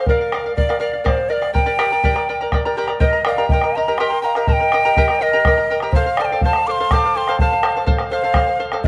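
A hollow cane quena carries the melody with airy vibrato and a crisp, chiffy attack, over a shimmering, fingerpicked charango and a round, vintage-toned bombo, both set up front in this festive yet melancholic Andean folk piece in a straight 6/8. At 3.0 seconds a large wooden quena joins in the background with a breathy, bright and slightly unsteady second line as the harmony moves from Bb and Gm to Eb and F. Close, detailed microphones and light reverb give the fragment an intimate presence.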